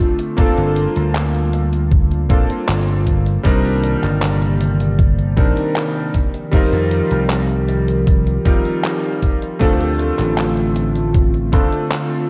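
A detuned 8-bit drum machine opens at 78 BPM in a straight 4/4, its overdriven handclaps and hi-hat sounding sampler-style and roomy. It is soon joined by a thumpy, tape-warm electronic kick sitting up front, while a vintage slap bass rounds out the low end from 0.4 seconds. This woozy, nostalgic vaporwave excerpt in C dorian layers a bright, clangy electric grand piano, lush with chorus and diffuse ambient delay, over a warbling, detuned tape-like pad with a slow attack and dark lo-fi tone. The chords move through Gm11, Cm9, F9sus4 and Dm7 in a dreamy, cassette-flavoured mix soaked in hall reverb.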